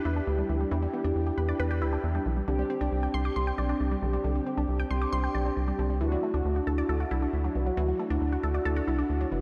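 A steady, straight 4/4 pulse at 136 BPM drives this nocturnal synth-pop excerpt, with a rubbery, bouncy square bass sitting up front under a mellow, brassy synth brass part thickened by chorus, moving through Em7, Csus2 and Dadd9. Alongside them, a resonant blip pluck spins squelchy, bright arpeggios across a broad range, colored by phaser and tape echo. A lush hall reverb with a 2.7 s tail soaks the mix in a dreamy haze.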